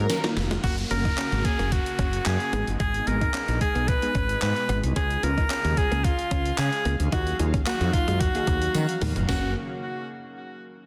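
Upbeat, summery dance-pop cut from a longer piece, with an edgy, forceful alto saxophone carrying the melody up front, its close-miked pop-style tone touched with vibrato and trailed by delay. A gated 80s digital drum machine drives the groove with a thumpy kick, a gated-reverb snare, handclaps, hi-hat and toms, adding fills at the very start and again near 8.7 seconds. A growly, round fretless electric bass sits up front beside the drums, breathing with sidechain pumping along with the background synths. Behind them, a punchy sawtooth unison pluck and a thick, chorused unison pad with slow attack and long release fill out the chords, while a bright, clean, direct-recorded electric guitar picks a compressed riff. A downlifter sweeps in the background until 5.0 seconds, and a jingly, very quiet tambourine returns from 5.5 seconds, all within a light reverb and a dense, heavily limited modern master.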